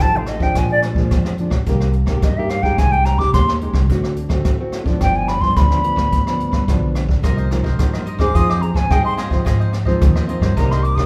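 A silver concert flute carries the melody throughout this yearning, nostalgic samba-choro fragment in C minor at 108 BPM, its airy, tongued tone shaded with vibrato, a little unsteady and sitting up front in a large studio room. Fingerpicked nylon-string guitar with audible finger squeak, growly pizzicato upright bass and a brushed drum kit with a boomy kick, hi-hat and rim click play together as a live band, while a crisp, picked cavaquinho slips in quietly at 7.2 seconds. The harmony moves through F7, Bb7 and Cm7 toward D7 and G7 before settling on Cm7, Fm7 and Ab6, with a moderate reverb lending the room depth.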